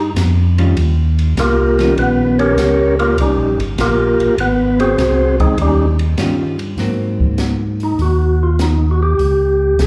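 Soulful and greasy, this soul jazz organ trio swings easily in 4/4, heard as a short cut from a longer piece played live in a club through the house sound system. A percussive tonewheel organ carries the melody up front, its soft, flute-like voice marked by third harmonic percussion and key click, spinning through a fast rotary speaker with a touch of slapback echo, and it solos from the start until 6.8 seconds. Beneath it, a second tonewheel organ holds down the bass line with a fat, clean tone turning slowly through its rotary speaker. An acoustic jazz kit enters at 0.2 seconds, sitting back in a small room with dark cymbals, a high-tuned snare and a boomy kick. A dark, picked hollow-body electric guitar adds clean accompaniment with slapback echo in two brief spots, first from 0.6 seconds and again from 6.2 seconds. The harmony moves through rich ninth and seventh chords, shifting to a new section at 6.8 seconds, all bathed in light club reverb.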